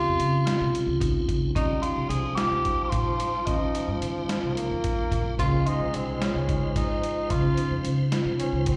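A breathy tenor saxophone carries the melody from the opening moment, over piping tonewheel organ chords and bright marimba arpeggios struck with hard mallets. This is an intricate, driving slice of progressive instrumental band music in 7/8 at 219 BPM in eighths, with a straight feel and an Eb mixolydian color, tuned to A4 = 436 Hz. A woody pizzicato upright bass on gut strings and a gritty, compressed sampler-style boom bap kit, with a thumpy kick, medium-tuned snare and hi-hat, arrive almost at once to anchor the uneven meter. The organ is lightly overdriven, with chorus vibrato, key click and a fast rotary speaker, while the subtoned, scooped saxophone sits up front yet sounds distant and roomy. At 1.6 seconds a clear, close-miked trombone enters with a soft-attack second line full of vibrato and scooped notes, as the harmony moves from Dbmaj7 to Ebadd9 and back to Dbmaj7. Slapback echo touches the horns, organ and marimba, and the whole passage is heard as a live gig through a venue's PA, with light recital-hall reverb.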